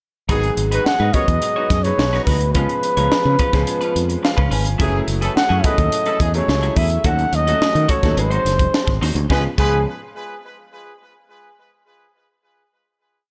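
Polished 1980s jazz-funk pop at 107 BPM in a straight 4/4, this short, complete piece carries a nocturnal, urban mood as it moves through a pre-chorus and settles on a final chord at 9.3 seconds. Up front, a crisp fusion drum kit with a punchy kick, bright cymbals and a high-tuned snare lays down a crisp sixteenth-note studio groove, while a fretless electric bass plays an agile, syncopated line with muted ghost notes and chromatic approach notes. A boxy grand piano with a subtle chorus supplies short, syncopated drop2 chords and adds a brief fill at 4.0 seconds, and a dark, compressed semi-hollow electric guitar sits in the background with picked sixteenth-note rhythm work. A tight horn section with a smooth top and delay plays short pop-style riffs as a second line. From 0.9 seconds a breathy, whispered flugelhorn with vibrato and a soft attack carries an intimate, motif-based jazz melody of call phrases, with delay, over chords that move from G#m7 through F#m9 and D#m7b5 to close on C#7, all in a light, small-room reverb.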